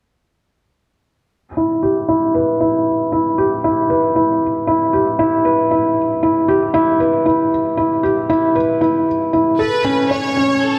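Hypnotic and intimate, this electronica excerpt at 116 BPM in E dorian sets a soft, felt-muted upright piano riff with audible action noise, low-pass filtering, delay and a filter sweep from 1.6 seconds over an Em chord, before a focused, vibrato-rich violin section enters with a clear bowed melody at 9.6 seconds as the harmony moves to A, all placed up front in a wet scoring-stage reverb.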